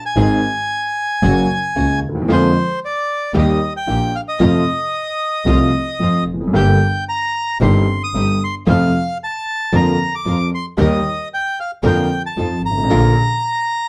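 Dramatic and sultry, this tango excerpt unfolds with a rubato feel, led by an up-front, reedy bandoneon carrying the melody from the start to 13.9 seconds. A baby grand piano with an open tone and long sustain sits close by as accompaniment, while a single bowed double bass gives an expressive bass line with a soft attack, vibrato and portamento. In the background, a rich studio string section plays smooth, even bowed stabs, and the mix has moderate reverb and a dark, warm production.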